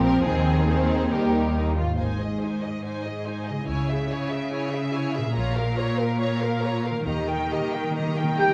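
A straight 4/4 pulse at 141 BPM drives this soaring, adventurous cinematic cue in Ab major: lush bowed violins carry an expressive vibrato melody over a focused second violin line, with intense violas, an up-front rich cello section and smooth double basses beneath, a mellow, ringing concert harp playing arpeggios, a bright trombone section holding chords until 1.8 s, and hard-mallet timpani filling from 7.1 s, before a hollow flute, dark French horns and clear trumpet stabs arrive together at 8.4 s as the excerpt breaks off, set in a moderate scoring-stage reverb.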